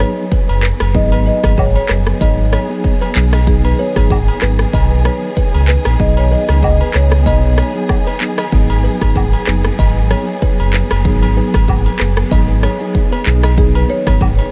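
A sultry, hypnotic afrobeats excerpt in G# minor at 95 BPM with a swung 16th-note feel opens with a dark, woody marimba melody in diffuse ambient delay, which drops out at 8.2 seconds and returns at 13.6, over a mellow tine electric piano, a lush, distant string section with vibrato and portamento, a buzzing kalimba riff set in the background with its own ambient delay, a deep sine sub bass up front, an electronic afro-pop kit of deep kick, rim click, handclaps and shaker, and faint agogo bells and woodblock, as the harmony moves between G#m7 and B6 in a lightly reverberant small room.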